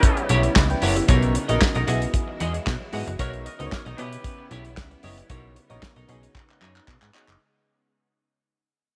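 A dry, damped drum kit with a tight kick, medium-tuned snare, handclaps and hi-hat drives this feel-good, danceable early-eighties boogie funk fragment in straight 4/4, joined at 0.3 s by a snappy, metallic slap-like FM bass, while a clean semi-hollow guitar riff with analog chorus, a glassy, bell-like FM electric piano, a silky string machine in the background and a clear, punchy horn section playing a second line until 4.5 s move over chords alternating between Em6/B, Bmaj9 and Emaj9/B before settling on B6/9, as the clip fades out toward a drum fill at 6.3 s.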